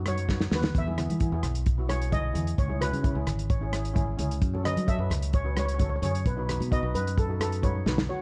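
A mellow lead steel pan solo shimmers over a second pan's airy accompaniment from the start, setting a festive, carefree calypso groove at 131 BPM in straight 4/4, moving through B, E, C#m7, F#m7 and B7. Beneath it, a punchy fingered electric bass and an up-front, muffled soul drum kit with a tight kick and rim clicks drive the beat, with drum fills at 0.3 and 7.7 seconds, while very quiet, thin-skinned congas add a bright, close texture. Light reverb and a dark, warm production round out this short cut from a longer piece.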